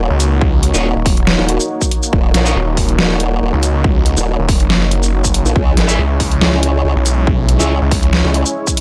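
A lush supersaw pad and a wobbling formant-sweep bass open this short cut from a longer piece of heavy wobble dubstep, pitched in Eb Phrygian at 140 BPM with a swung, half-time 4/4 feel. The pad holds sustained chords with a slow attack, bright and detuned with a sub octave beneath, pumping against the sidechain under a low-pass filter. Up front, the wobble bass sits beside a snarling distorted saw bass that enters at 0.1 seconds, growling and detuned, and the two basses drive the aggressive, chaotic mood over Ebm7 and then Dbm from 5.6 seconds. An overdriven dubstep kit with a deep snare, hi-hat and shaker enters at 0.2 seconds and is joined at 0.4 seconds by a punchy layered electronic kick, both re-recorded in a small room. In the background, a fuzzed, double-tracked electric guitar adds picked stabs with tape echo, first from 0.7 seconds and again later. The mix is dry and loud, with the basses and drum kit pushed hard to the front.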